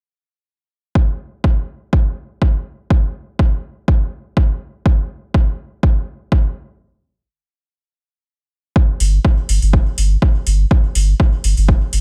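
A lightly swung 4/4 pulse from an overdriven, layered electronic kick drum opens this hazy, nocturnal dub techno excerpt, and after a break from 6.8 to 8.8 seconds a clean, dark sine sub bass pumps against the sidechain alongside gritty, metallic analog hi-hats, both entering at 9.0 seconds, all in a dry mix cut from a longer piece.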